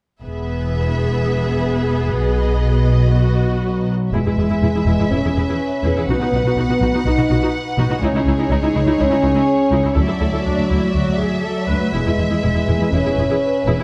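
A dark, warm production with moderate scoring-stage reverb frames this majestic, heroic cinematic excerpt, where lush bowed violins carry a smooth second line over focused, close violas, expressive cellos sit in the background and distant double basses add portamento beneath, until a roomy French horn section enters at 3.6 s with sustained chords as the harmony moves through C#madd9 and Dadd9 before returning to E.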